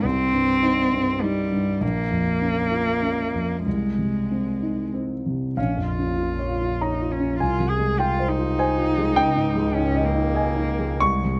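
Longing and melancholic, this neoclassical passage for piano and strings, cut from a longer piece, moves in a flexible, rubato three-beat metre. A mellow concert grand with deep bass carries the accompaniment up front, while a dark, intimate solo cello sings a second line close by, bowed sul tasto with vibrato, a soft attack, an airy bow and a smooth top. At 5.6 s a pure, floating double bass enters at a distance, also bowed sul tasto with a gentle attack, and the dry, detailed recording keeps the piano and cello near.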